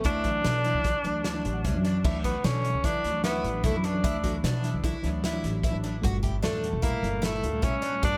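Driving along in a straight 5/4 at 150 BPM, this intricate progressive instrumental in D major feels propulsive, and it is cut from a longer piece. A loose indie drum kit with a punchy kick, fat snare and dark cymbals sits in a pumping studio room and is treated with dub echo, while a woody, thumpy pizzicato upright bass anchors the low end. Up front, a breathy tenor saxophone plays the melody in a vintage jazz style, with subtone, vibrato and scooped notes trailing dub echo. A picked twelve-string acoustic guitar adds shimmering, octave-doubled arpeggios, and a clean tine electric piano sits in the background, playing a short fill from 1.2 to 2.0 seconds. The harmony rests on Dadd9 before shifting to Gmadd9 at 6.0 seconds, all within an echo-heavy mix with light reverb.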